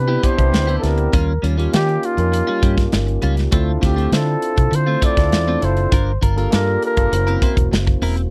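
This short cut of polished 1980s jazz-funk pop comes from a dry, close recording in a 1970s studio style, with little reverb. It sits in a straight 4/4 with an urban, glossy mood. A breathy flugelhorn carries the melody from the start: intimate and whispered, with soft attacks, scooped notes and vibrato, it stops at 7.7 seconds. Beneath it, a barky tine electric piano, bright and lightly overdriven through a combo amp with analog chorus, plays the accompaniment, while a clean, picked and compressed electric guitar, also with analog chorus, adds a riff. A dark, round, foam-muted fingered electric bass sits up front with an acoustic studio drum kit of punchy kick, medium-tuned snare and hi-hat in a mid-forward room sound. The harmony moves from Cmaj7 through Eb9, Dm7 and Gm7 to a closing F#7#11.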